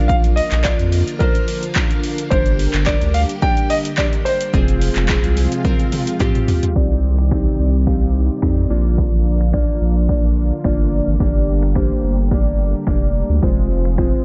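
Confident and driving, this dance-pop excerpt sets a concert grand piano melody with a digital delay over glassy, warbling digital keys, while shimmering string-machine violins hold sustained chords in the background, the keys and strings both pumping to the sidechain. A thick, saturated sub bass sits up front beside a punchy analog drum machine of kick, hi-hat, finger snaps, handclaps, shaker and toms, with a very quiet, crisp group handclap adding a human touch until 6.3 s. The piano drops out during a drum fill, and a filter sweep begins at 6.8 s, all within a dark, dry production.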